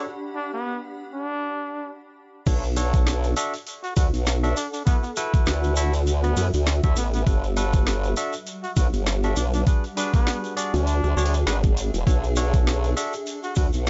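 Funky and playful, this glitch hop excerpt opens on a short break where a barky tine electric piano stabs through vintage sampler grit and dub echo over a cloudy, evolving granular pad, and from 0.4 seconds a breathy, mellow trumpet carries a jazz-style solo line with scooped notes and vibrato. At 2.5 seconds the drop lands with an up-front knocking electronic kick, an overdriven kit of woody snare, bright hats, rim click and crash, a grainy shekere, and a wobbling formant-sweep bass thickened with chorus, while the piano and pad pump against the sidechain. Light reverb surrounds the swung groove, and the overall top end tops out below 7.7 kHz.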